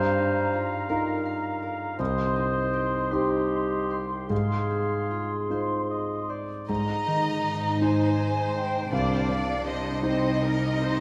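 An intimate concert grand piano sits up front, its deep bass, long sustain and audible action noise carrying the accompaniment through this hopeful, uplifting cinematic film-score fragment in a rubato 6/8. Around it, a bright concert harp rings out arpeggios in the background, while an airy flute ensemble with vibrato and soft attacks holds a second line throughout. In the opening phrases, a dark, distant cor anglais with light vibrato and a mellow clarinet add roomy solo colour in classical style. At 6.7 seconds the music moves into a new section: a close, expressive violin section arrives with vibrato, soft attacks and portamento, and a rich, distant cello section takes up the bass. A smooth, lush viola section joins the accompaniment at 7.8 seconds, all set in the generous reverb of a recital hall.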